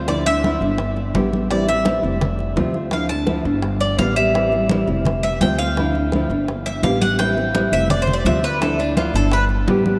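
Cuban son in a nostalgic, guajira-tinged mood, with a bright, metallic Cuban tres up front playing picked arpeggios on its doubled strings over a dark, thumb-plucked nylon-string guitar, a woody, thumpy pizzicato upright bass, thick-skinned, damped congas and tight, high-tuned bongos, all washed in the long echo of a vast cathedral-like space as a Dmadd9, Gadd9, Am7 and F progression cycles through this short cut from a longer piece.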